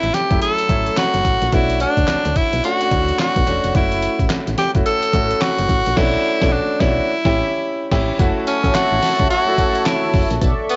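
R&B in a new jack swing vein, this confident, bouncy passage is cut from a longer piece and rides a swung sixteenth-note lilt over chords of F#m7, Bm9 and A7. A raspy, forceful tenor saxophone carries the melody up front with light vibrato and an edgy pop-style punch, its tone colored by cassette tape. A clear concert grand piano with deep bass and short sustain supplies the accompaniment, sitting above a round, dark FM bass with a fast attack. The sampler-style drum kit is compressed and gritty, with a thumpy kick, fat snare, hi-hat, handclaps, tambourine and crash cymbal, and it sounds re-recorded in a large room and dubbed to tape. The band hits an accent from 6.0 to 8.2 seconds, and at 8.2 seconds a shimmering, chorused pulse-width pad enters with detuned, sub-octave sustained chords as the harmony returns to F#m7. Light reverb and digital ambience surround a home-cassette sound with a dulled top end.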